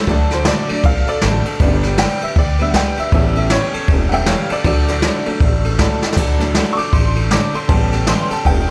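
Rockabilly with a rollicking, rowdy swing, this short excerpt cut from a longer piece runs through a simple D to G to A7 progression. A jangly, metallic tack piano carries a honky-tonk solo from start to finish, its tone bright and vintage. Beneath it, a full-bodied jumbo steel-string acoustic guitar is picked in accompaniment, while a pizzicato upright bass with gut strings gives a woody, thumpy low end. The drum kit, played with brushes, has dark cymbals, a medium-tuned snare and a boomy kick, and it sounds both up front and roomy with a rolled-off top. A drum fill at 6.0 seconds leads into a repeat of the opening section, all set in light reverb and studio ambience.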